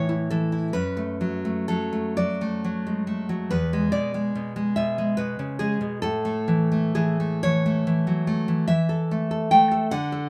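A fingerpicked nylon-string guitar, bright and full-bodied with fresh strings and a touch of finger squeak, carries this romantic solo classical piece in A major, sitting up front in a dry sound. The mood is sunny and warm, moving at a rubato 40-50 BPM in 6/8 across a range from E2 to G5. This short cut from a longer piece passes from A through D/F#, E and back to A, closing on A5/E at 8.7 seconds.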